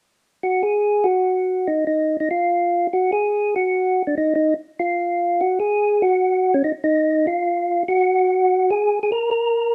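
A percussive tonewheel organ plays alone in this late-night, soulful jazz excerpt, its mellow, round tone coloured by third-harmonic percussion and a slow rotary speaker. Sitting up front in a light reverb, the clean, dark sound moves within a narrow middle range from 0.4 to 9.7 seconds, carried by a swing feel in four.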